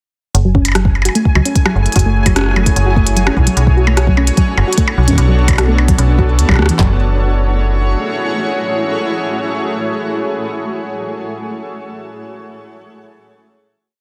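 IDM in F# minor at 149 BPM, this short, eerie and cerebral piece moves from F#m9 to Bm9 and back over a tuning of A4 = 444 Hz. From 0.3 seconds, an up-front, metallic FM bass plays a dub-style line with fast, decaying notes, while two glitchy electronic drum kits carry the groove. One kit gives a broken pattern of soft kick, tiny snare and handclaps. The other supplies clicky closed hats, high woodblock blips and rim clicks in an ever-changing, glitched beat, both kits tape-warm and set in studio reverb. A soft, round, dark pluck repeats a 9-step arpeggio loop that drifts against the bar, colored by chorus, cassette tape, delay and shimmer reverb, while a faint pulsing gated texture holds a high G#5 in the background. The drums fall away at 6.8 seconds, and the bass lingers until 8 seconds as a cloudy, blurred granular pad carries the final F#m9 chord until 10.8 seconds, all within a dense, heavily limited modern master.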